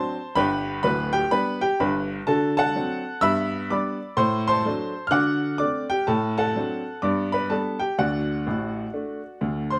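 Captured by close, detailed microphones in a light reverb, this short cut from a longer stride piano performance puts a clear, woody upright piano up front with a vintage character. The jazz piece swings exuberantly at 126 BPM in 4/4, its eighth notes carrying a 63% swing feel in G major, tuned slightly flat at A4 = 439 Hz. The upright piano plays alone for the full 9.8 seconds, spanning a broad range from D1 up to F#6. Its harmony moves between G and D7, passing through D7/A along the way before settling back on G at 7.0 seconds and reaching D at 8.0 seconds. The result is a buoyant, smooth-toned fragment of solo stride playing, rich in close-up detail.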